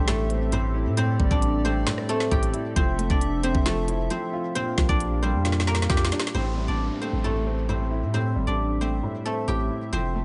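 A silvery, ringing guzheng carries the melancholic, menacing melody over a dark grand piano, a hollow chorused pad and a long, deep 808-style bass in this half-time 134 BPM trap excerpt in A phrygian, where a knocking, crisp trap kit drives until a fill at 5.5 seconds and drops out at 6.4 seconds as a background downlifter enters beneath the continuing parts.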